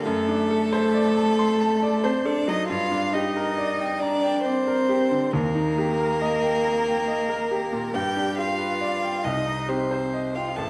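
A slow, rubato 6/8 lilt at 45 dotted-quarter beats per minute carries this solemn, yearning G minor movement for piano trio, a short cut from a longer piece heard in a reverberant recital hall. An intimate, close violin sings the melody up front, played sul tasto with light vibrato, soft attacks and an airy bow, while a single cello traces a second line beneath it, also sul tasto with soft attacks and light vibrato. A bright, brilliant baby grand piano provides open accompaniment throughout the 10.7 seconds as the harmony passes from D7/F# through Gm, Eb and G7 to Cm at 9.2 seconds.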